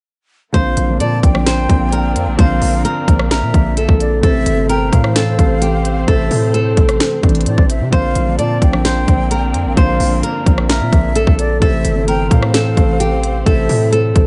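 Bathed in studio reverb with a dulled top end, this menacing, melancholic trap piece sits in a half-time feel. It is driven by an up-front electronic drum kit of hard-clipped kick, sharp snare, crisp hats and rim clicks, and by a heavy, saturated 808-style bass with a fast attack and decaying tail. A fingerpicked flamenco guitar carries the melody through a low-pass filter, while a breathy, tongued concert flute with vibrato and delay traces a second line above it until 13.9 seconds; beneath them a boxy, filtered grand piano with deep bass plays accompaniment and a distant, woody string section holds lush bowed chords in the background as the harmony alternates between Bbadd9 and Am.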